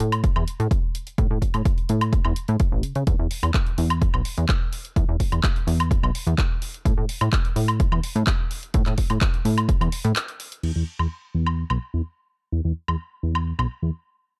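A plucky analog bass anchors this feel-good, sunny slice of filtered disco house. It is funky and up front, with a sawtooth bite, ring-modulated edges and a fast-attack, decaying filter pluck, pumped by sidechain compression and shaded by a low-pass filter. A punchy, layered electronic kick sits forward from 0.2 seconds with a tape-warm thump and a touch of small-room ambience, dropping out at 9.8 seconds. A house drum kit runs throughout with crash cymbal, handclaps, warm hi-hats and woodblock; its hats, percussion and cymbals breathe with sidechain pumping in a small room. After a brief break at 10.2 seconds, a filter sweep moves across the bass from 10.6 seconds through the end of this cut from a longer piece. The overall production is dark and warm, wrapped in digital ambience.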